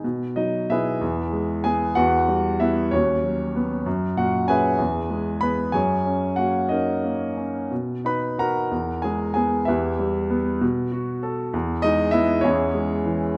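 Its 6/8 metre, uneven beats and free rubato give this brief solo piano piece a gently breathing, unhurried pulse. It is a lyrical classical work with a reflective, wistful mood, heard as an excerpt cut from a longer piece. A single concert grand carries everything, sounding warm and natural with a deep bass, placed up front and spanning from D#2 up to B5. The harmony drifts between major and minor colours, turning from E to E minor by 2.0 seconds, reaching an F#add9 around 5.7 seconds, and settling on C#m/E at 12.4 seconds. A moderate concert hall reverb gives the instrument a gentle sense of space around its tone.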